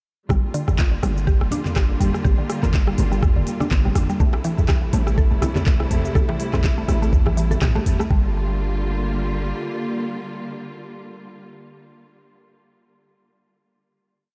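Afro house at 123 BPM in G dorian, earthy and driving, with a swung 16th feel. A knocking four-on-the-floor electronic kick sits up front beside a programmed afro-pop kit of claps, shaker, rim clicks, low toms and smooth hats, while very quiet congas interlock underneath and a tight, cracking djembe joins at 4.3 seconds. A deep, boomy 808-style bass plays a dotted rhythm and a woody, round FM pluck with chorus and delay runs a 32-step arpeggio sequence. Lush, biting bowed string chords move from Gm7 to Am7 and hold a final Gm7 from 8.1 seconds, and all three pump with the sidechain.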